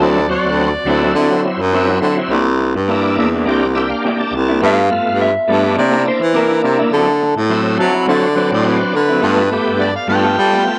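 Rollicking and swaggering, this short blues cut moves at 104 BPM in 4/4 with a light swing on the sixteenths, cycling through ninth chords on D, C and G. A breathy baritone saxophone carries the bass line up front, its soft attack and whispered, intimate tone colored by vibrato, while a bright tonewheel organ shouts its accompaniment throughout, lightly overdriven with key click, chorus vibrato and a slow rotary speaker, and adds a fill from 3.5 to 4.6 seconds. One electric guitar through a small old amp plays dark, slightly broken-up picked stabs in the background, treated with tremolo and tape echo. A second guitar through a small old amp, compressed and lo-fi, picks the melody from 4.7 to 8.9 seconds. An overdriven harmonica, gritty and amplified with tongue slaps and scooped notes, appears briefly at the opening and returns at 7.8 seconds to take a solo into the closing section, where a bright horn section briefly adds sustained chords in the background. 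A moderate plate reverb gives the whole band a roomy sheen.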